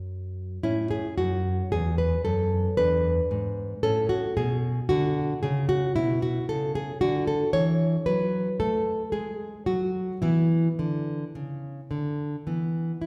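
A solo nylon-string guitar, bright, small and up front, carries this short classical excerpt: a baroque-style dance in 3/4 and A major, cut from a longer piece. The tempo sits around 56 BPM, with uneven beats and a rubato feel that lets the phrases breathe, and the mood is serene and radiant. The fingerpicked part spans from E2 up to C#5, and the harmony opens on F#m before settling into A, moving through E7, back to A, then to D at 7.0 seconds and closing on E5 at 10.2 seconds. A recital-hall reverb with a 1.7-second tail surrounds the guitar, giving the sense of a church or concert hall around the intimate tone. The whole fragment lasts about 13.1 seconds.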